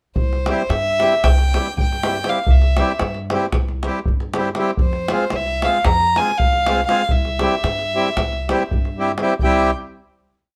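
In a straight 9/8 at 234 BPM counted in eighths, this fiery, restless Balkan wedding-band folk piece in C major puts a bowed, sul tasto violin up front, its soft attack and pure, floating tone carrying a motif-based melody in sentence-like phrases. From 0.5 seconds a close-miked, reedy accordion adds dry, close-voiced off-beat chords, while a pizzicato upright bass growls woody root-and-fifth notes on the main beats and a tight, saturated davul drives a two-stick pattern. All of this sits in light reverb as the harmony moves from C to F minor and back, ending on a final chord at 9.4 seconds.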